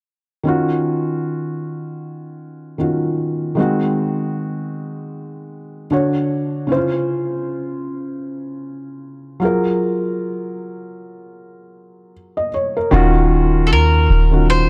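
A dark production with light reverb and a small-room ambience frames this moody, sensual contemporary R&B fragment, which moves with a gentle swing. A felt-muted upright piano, mellow and intimate with thick felt and short sustain, carries the accompaniment through Ebm9, Ab7/Eb, Dmaj7, Dbmaj7 and Gbmaj9 before returning to Ebm9. At 12.9 seconds a round, sine-like 808-style bass arrives, deep and up front with a fast attack that decays, and at 13.7 seconds a picked acoustic bowl-back mandolin with double strings adds a brief melody touched with delay.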